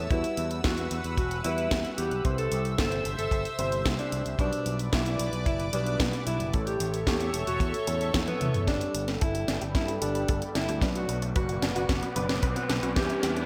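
Italo disco at 112 BPM with a danceable, bittersweet mood, this excerpt sets a mellow, distant alto saxophone melody with vibrato and delay over a lush, detuned unison pad treated with chorus and phaser, dark vintage baby grand piano stabs in the background, and a growling, overdriven fingered electric bass. A dry, tight kick joins a layered electronic house kit that sits up front with a cracking snare, toms and gated reverb, and a drum fill leads at 8.7 seconds into a new section where the pad takes a filter sweep and a very quiet, round analog pluck begins arpeggios. A background riser enters at 10.5 seconds, all within a bright 1980s-style digital production with moderate plate reverb.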